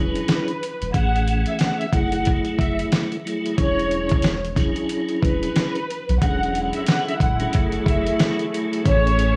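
A swung 91 BPM boom-bap groove in 4/4 arrives at 0.2 seconds on a dusty, gritty sampler-style kit with a thumpy kick and fat snare up front. Beneath it a deep, round sub bass holds the low end, while a piping, lightly overdriven tonewheel organ with key click, chorus vibrato and slow rotary speaker accompanies through E13, Amaj7 and F#m9 changes. A lush, bowed violin section carries the melody with a digital delay trail, and a rich string section adds sustained chords from 6.2 seconds, all wrapped in vinyl crackle and light studio reverb for a soulful, confident mood in this short cut from a longer piece.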